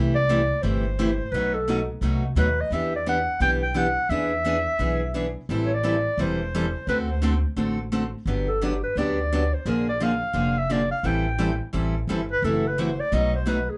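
A warm, subtone clarinet with light vibrato and a soft attack carries the melody up front, moving into a solo at 8.3 s over a plate reverb, while a bright, picked archtop guitar with audible finger squeak and a woody pizzicato upright bass drive this lively, playful excerpt of jazz manouche string swing at 173 BPM in G major, all set in a club ambience heard from further back in the room.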